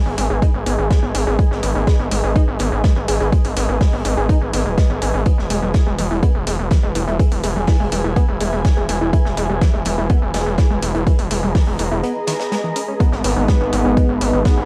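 A punchy, overdriven electronic kick drives a straight pulse, joined by a dry, distorted electronic hi-hat and a faint acoustic kit whose hi-hat and medium-tuned snare add a natural big-room sheen, while a gritty, saturated synth bass pumps up front. In this melancholic, dramatic melodic techno excerpt, a tight, nasal sequenced synth spins detuned arpeggios beneath a blurred granular cloud pad, all colored by cassette tape and light digital ambience, as the harmony moves from G#m to E. After a brief break at 12.0 seconds, a fat, warbling analog lead holds a single vintage-toned note and a bright, resonant sweeping pad swells into sustained chords from 13.0 seconds.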